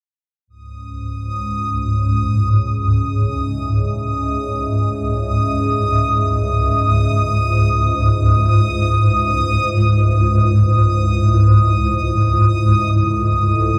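Unfolding in free time, this dark ambient drone drifts along with nothing to mark a beat, and it feels desolate and ominous from the start. Up front, a swarming, tense drone of detuned sine voices sits low in the register from 0.9 seconds, its granular grain evolving under a moving notch and a filter sweep. A deep, moody analog pad fades in behind it with sustained chords, its sawtooth and triangle tones thickened by a sub octave and chorus, and it sits low in the balance. High above, a bubbling stepped-filter texture holds a single resonant note, its random filter steps giving a restless flicker to the slow-attack, long-release sound. The harmony shifts once, at 10.1 seconds, and everything is bathed in a cavernous cathedral reverb that lends the dark production its brooding depth, in a passage cut from a longer piece.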